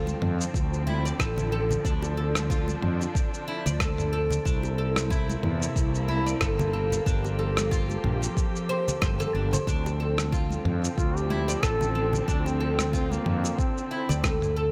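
A mystical, earthy organic downtempo excerpt in D minor at 92 BPM opens with lush, dark bowed strings pumping beneath woody, plectrum-plucked oud arpeggios trailed by delay, a growly, up-front fretless bass and a faint, glassy drifting texture over a Dm7, C7, Gm7 progression. These are joined at once by a gritty, tape-warm sampler-style kit of rim clicks, shaker and toms, dry hand-struck congas and bongos, and from 0.5 seconds a deep electronic kick, before a warm duduk with scooped, vibrato-rich notes and tape echo takes the melody at 11.0 seconds over the returning Dm7.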